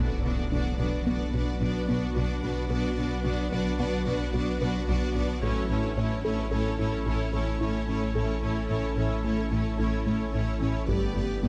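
Futuristic and tense, this cinematic excerpt blends a symphonic string orchestra with electronic textures in a steady, straight 5/4 pulse. Bowed violins carry a lush, vibrato-rich second line above a smooth viola accompaniment, while cellos, double basses and a thick, saturated sub bass anchor the low end beneath a chord motion from Bm to A at 5.4 seconds and G at 10.9 seconds. An ethereal, airy pad holds sustained chords with slow attacks, ensemble chorus, built-in reverb and tremolo, and a very quiet, squelchy resonant pluck spins arpeggios through a phaser. A faint electronic impact marks the opening until 2.7 seconds, and a close, dry taiko ensemble with heavy sticks sits in the background, striking in brief bursts from 5.4 seconds. A moderate scoring stage reverb gives the orchestral layers a sense of space.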